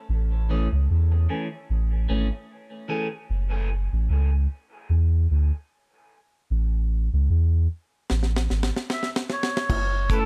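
A round, soft dub sub bass opens this meditative, spacious dub reggae excerpt, joined briefly by a clean, picked electric guitar with phaser and dub echo, before a dry acoustic drum kit with a high-tuned snare and tight kick enters with a fill at 8.1 seconds, a reedy, breathy melodica with dub echo takes the melody at 8.9 seconds, and distant, low-tuned bongos sound briefly at 9.7 seconds, all within a small room as the chords move from Amaj7 to F#m7.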